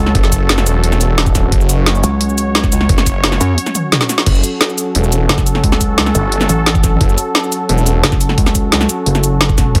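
A snarling, overdriven sawtooth bass growls up front in this dark, futuristic drum and bass cut at 175 BPM in F# minor, alongside a metallic, wobbling FM bass with distortion and chorus. A woody snare, bright hats, cabasa, crash and toms from the overdriven kit sit over a knocking electronic kick, with a drum fill at 3.8 seconds leading into the second half of the drop. Beneath it all, a vintage, warbling sawtooth pad holds sustained F#m chords with resonant chorus and sidechain pumping in a digital ambience.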